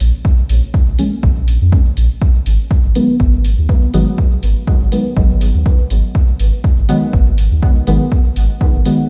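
Nocturnal and meditative, this short cut from a longer dub techno piece moves in 4/4 with a light swing on the sixteenths. A punchy, tape-warm analog kick sits up front from 0.2 seconds, while softer electronic hi-hat and shaker tick along further back. Beneath it, a round, sustained sub bass blends triangle and square tones, its tube saturation and sidechain pumping breathing with the beat. From 1.0 seconds, a dark, full-bodied chord stab of detuned sawtooth, triangle and sine layers moves from Bbm7 to Abm7, shaded by chorus, phaser, pumping and a dub echo as a filter sweep reshapes it. The whole passage sounds as though played on a big sound system in a bare stone room.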